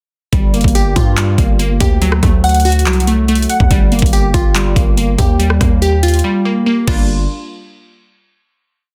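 A glassy, detuned wavetable pluck sits up front in this eerie, dark trap piece, cycling a patterned eighth-note arpeggio like a sampled loop, its crystalline, ring-modulated tone shaded by chorus, a filter sweep and a moving notch over Gm7, D and Ebadd9 chords. Beneath it, a distorted, aggressive 808-style bass holds long, heavy sub notes that follow the kick and bend with pitch slides, while a produced half-time kit drives the beat with a knocking kick, metallic hi-hats in fast rolls, handclaps, rim clicks and crash. The dry, dense, heavily limited mix runs the hook into a break at 6.2 seconds before closing on a final hit at 7.1 seconds.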